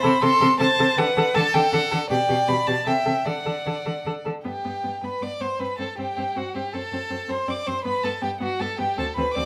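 In a flexible, rubato triple metre, this quick, cheerful and graceful classical-period movement for string quartet, cut from a longer piece, unfolds as a single bowed player on each part. A dark, intimate first violin carries the melody with light vibrato, a soft sul tasto attack and a smooth top, while a rich, even second violin adds a supporting line, the viola fills in expressive accompaniment with vibrato and portamento, and a focused cello anchors the bass. The ensemble sits in a moderate stone room reverb, and the harmony moves from its opening phrase into a second section at 4.5 seconds that passes through a diminished chord before settling home.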